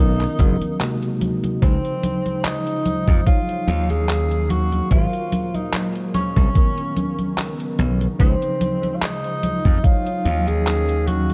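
This dreamy, nostalgic vaporwave fragment opens with a mellow tenor saxophone melody, its vibrato sounding distant and roomy through a tape echo. Beneath it, a clean tine electric piano plays lush chorused accompaniment, while a glassy, bright slap bass sits punchy and up front. A detuned 8-bit drum machine of congas, handclaps and hi-hat joins almost at once, and a thumpy electronic kick arrives at 0.4 seconds and carries on until 10.0 seconds, both set in studio ambience. A very quiet, warbling pad of detuned sawtooth and triangle tones holds lo-fi, vintage chords underneath. At a relaxed 73 BPM in Db major with a light swing, a brief break from 0.8 to 1.6 seconds gives way to rich ninth and thirteenth chords such as Dbmaj9, Ebm9 and Ab13, all within a dark, softly reverberant production.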